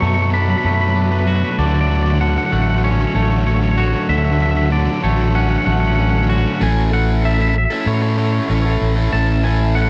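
A twangy, clean electric guitar melody with digital delay leads this soaring, hopeful rock piece at 96 BPM in A major, over a second twangy guitar playing delayed arpeggios, a crunchy overdriven guitar riff, a punchy fingered electric bass and a very quiet, deep, detuned ambient pad holding sustained chords. The opening builds over Bm7 and Dmaj7 until 6.6 seconds, when the arpeggios and crunchy riff stop and a bright, compressed fuzz guitar riff takes their place, up front over an A6 chord. The dark production carries little reverb, and this is a short cut from a longer piece.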